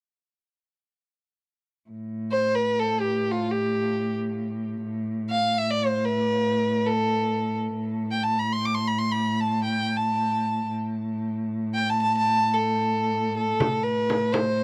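Unfolding in free time, this short excerpt from a longer Persian modal piece rests in the dastgah shur mode, its mood melancholic and hypnotic. A single bowed cello enters at 1.9 seconds and holds a low drone, its tone warm, smooth and even with vibrato and a smooth top. Moments later a lone violin takes the melody, rich, smooth and even with vibrato, ranging up to high notes, and trailed by a tape echo. Both strings sit up front in a dry, close recording with a 1970s studio character and light reverb. Near the close, at 13.6 seconds, a small, bright frame drum briefly sounds in its own small-room space as the music turns to a new section.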